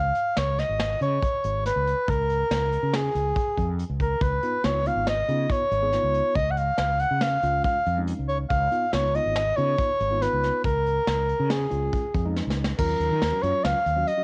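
A homely cassette sound colours this driving, bright progressive instrumental in 5/4, where a mellow soprano saxophone with light vibrato carries the classical-style solo melody up front over a bright, direct fretless electric bass, a vintage brush drum kit with dark cymbals and a rolled-off top, and, from 4.4 seconds, a worn, slightly out-of-tune tine electric piano, lightly overdriven, until a drum fill at 12.4 seconds leads into a new section before the cut.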